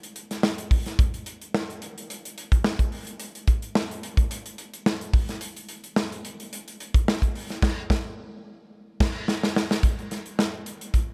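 A punchy kick, medium-tuned snare, bright crash and hi-hat from an up-front acoustic studio kit carry this urban, breezy pop groove in 4/4 with a light sixteenth-note swing and light reverb, featuring a band accent from 7.6 to 9.8 seconds and a drum fill from 8.7 to 9.8 seconds before a new section opens, cut from a longer piece.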